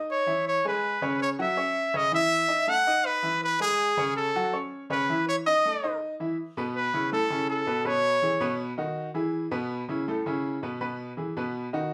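A bright, up-front solo trumpet with pop-style vibrato carries the melody through this festive, joyful Latin piece at 162 BPM in E major until 8.6 seconds, backed by a woody, polished upright piano that continues alone to the end of the cut-off fragment, the band playing live together in one room with a wet studio reverb.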